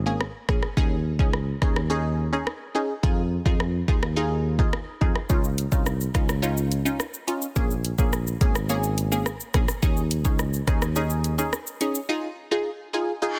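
Hypnotic and bouncy, this straight 106 BPM dancehall excerpt sets punchy, wave-folded sawtooth-and-triangle chord stabs with a filter pluck, moving notch and chorus over a dark, classical-style tuba bass and an electronic afro-pop kit of deep kick, shadowy hi-hats, rim click and shaker. It cycles through Bbm7, Eb7sus4, Fm7 and Dbadd9 in a dry, dense, heavily limited mix, and an electronic reverse cymbal flicks in at 13.3 seconds.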